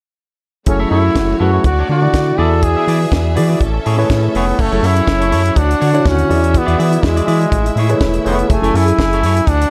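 A dark, lightly reverberant studio sound frames this danceable, driving disco fragment, where a brilliant trombone with light vibrato leads up front over lush bowed strings, a twangy clean electric guitar in the background, a worn, slightly out-of-tune electric piano lightly overdriven through a combo amp, a round, deep analog bass and a tight, dry funk drum kit with a high-tuned snare, over a repeating F#m7, Dmaj7, E7, Amaj7 progression.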